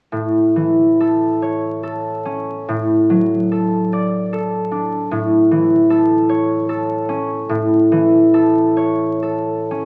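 Set in 6/8 with a free, rubato feel, this short classical fragment moves slowly at around 40-51 BPM counted in dotted quarters, and it is cut from a longer piece. A concert harp plays accompaniment from 0.1 to 9.8 seconds, its fingerpicked tones ringing and warm, sitting up front and spanning A2 to D5. The harmony rests in A major, moving from A to D over A at 2.7 seconds and back to A at 5.1 seconds, with the instrument tuned slightly high to A4 = 441 Hz. The mood is tender and serene, the harp bathed in a wet recital hall reverb. The sound carries the character of a very old 78 rpm record, with vinyl crackle surrounding the playing.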